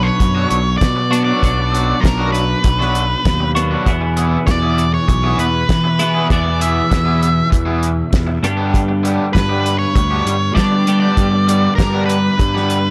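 Indie rock with a bittersweet, moody cast, this short cut from a longer piece moves at an unhurried, straight pace over a chord sequence of Bm, E and G. A dark, fuzz-soaked lead guitar carries the melody up front, its distortion trailed by dub echo. Beneath it, a clean, compressed twelve-string electric guitar picks a riff with analog chorus and dub echo of its own, while a raw, bright garage guitar adds an overdriven riff lower in the mix from 0.2 seconds. A growly, fuzzed fingered bass sits prominently in the low end. The cloth-damped drum kit sounds dry and thuddy, with a fat snare, a tight kick, a rolled-off top and a warm, up-front presence. The overall sound is close and dry in room tone yet heavy with echo.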